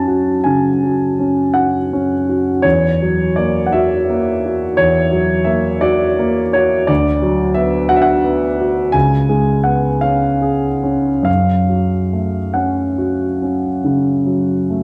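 Melancholic and yearning, this is a short cut from a longer romantic nocturne for solo piano, unfolding at a slow 45-60 BPM in 12/8 with a free, rubato feel. A single grand piano carries everything from 0.0 to 14.8 seconds, spanning from C#2 up to A5. Its tone is warm, present and polished, with a long sustain, and it sits up front in the mix. A wet recital hall reverb with a 1.6-second decay surrounds it, giving the dark production a sense of space. The harmony moves from F#m through F#7/E, Bm/D and C#7 before settling back on F#m at 11.3 seconds, closing the phrase with a sense of longing.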